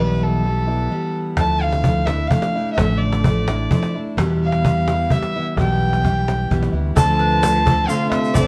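A nasal, reedy fiddle carries the melody in this wistful, reflective acoustic folk piece in three, set over a full-bodied picked steel-string guitar and a round, dark fretless electric bass. A snappy, compressed cajon joins at 1.4 seconds, and at 7.0 seconds a smooth, distant bowed cello adds a second line while a mellow, double-strung mandolin plays arpeggios and a grainy tube shaker sits low in the mix. The recording carries a moderate studio reverb and the worn, warbling pitch drift of old cassette tape.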